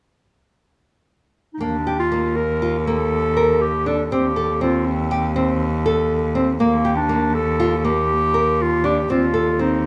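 Lightly reverberant and intimate, this hopeful, shimmering piece of contemporary chamber music in 5/4 finds a warm, classical-style solo clarinet carrying the melody up front from 1.5 seconds, while a dark, boxy fingerpicked nylon-string guitar spins arpeggios and a rich, biting bowed cello with light vibrato holds the bass beneath them.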